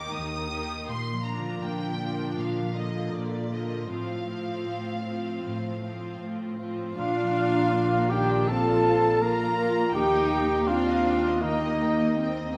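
A slow, rubato 4/4 pulse at 80 BPM carries this hopeful, uplifting cinematic film score in Bb major, cut from a longer piece. Muted violins with vibrato sing a distant, veiled melody over a second violin line, while con sordino violas and close, dark cellos supply the accompaniment and bass beneath ringing harp arpeggios that sit in the background. At 7.0 seconds the texture fills out as a punchy, dark cor anglais and an airy flute in the background add further lines, a mellow French horn section holds sustained chords, and muted double basses deepen the low end. The harmony moves from Eb through Bb and F/A, returning to Bb and Eb as the phrase repeats. A moderate scoring stage reverb gives the orchestra a gentle sense of space.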